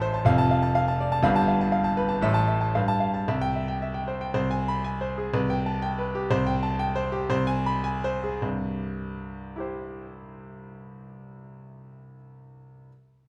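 Set in a reverberant recital hall, this heroic, sparkling classical piano study in C major moves in a rubato 2/4 at 102-125 BPM, with a solo concert grand sounding clear and up front, its deep bass and short sustain ringing into the room as the playing slows from 5.8 to 8.4 seconds before settling onto a C chord in this cut from a longer piece.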